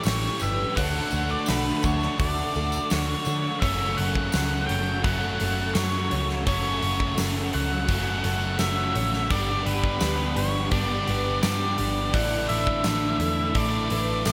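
A huge arena drum kit with a fat snare and punchy kick rings through a hall, entering at 0.1 s together with a round, foam-muted vintage bass in a straight 84 BPM 4/4, driving this hazy, wistful shoegaze and dream pop excerpt cut from a longer piece. Over chords moving from A7 to Dmaj7 and settling on F#m at 3.6 s before Gmaj7 and Asus4, a dark octave-fuzz lead guitar carries the melody through tape echo. Behind it sit a biting overdriven riff with analog chorus, a bright double-tracked crunchy guitar, and a lo-fi, slightly broken-up small-amp guitar washed in reverse reverb, while a very quiet shimmering twelve-string plays arpeggios, a warbling sawtooth string machine holds soft viola chords, and a jingly, saturated tambourine adds sparkle under light reverb.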